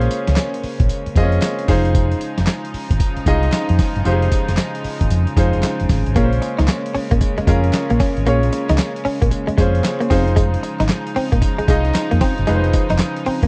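A gritty, compressed sampler-style drum kit sits up front in this bouncy, confident new jack swing excerpt, its thumpy kick, snare, hi-hat, handclaps and tambourine riding a swung groove beneath a dark, round, punchy fingered electric bass. A clear, polished grand piano with short sustain plays accompaniment while a reedy string section with gut-string tone and light vibrato holds sustained chords, moving between Bbm9 and Fm7. At 6.2 seconds a clean, direct-recorded electric guitar enters with a picked riff touched by subtle chorus, all captured in a dry, close 1970s-style studio sound.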